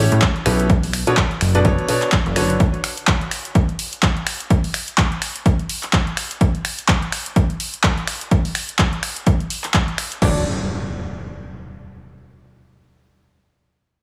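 Piano house at 126 BPM in 4/4 with a swung sixteenth-note feel, euphoric and feel-good in mood, cut from a longer piece. A clear baby grand piano plays an up-front riff over A7 and Bm9, treated with sidechain pumping and tape echo, while a plucky analog bass with a funky, sawtooth-edged filter pluck and tube saturation pumps along beneath it. Both drop out at 2.6 seconds, leaving the dry, overdriven drum machine to carry the groove with crash cymbal, finger snaps, handclaps and hi-hat, alongside a punchy, overdriven electronic kick that sits up front. Piano and bass return briefly at 10.2 seconds as an electronic impact enters and lasts to 12.1 seconds. Light studio reverb gives the mix a touch of space while keeping the drums tight and forward.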